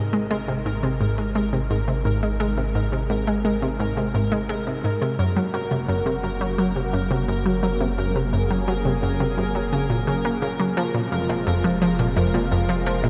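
A brilliant, detuned analog pluck riff sits up front, soaked in chorus, delay and shimmer reverb, over a thick, warbling unison pad that fades in beneath it, a deep, round analog bass and a pulsing, tempo-synced gated texture in this cosmic, expansive piece of sequencer-driven space music at 86 BPM. The chords move from Ab to Gb to Fm, and faint metallic electronic hi-hat and woodblock join at 10.8 s, all within a dark production bathed in huge ambient reverb.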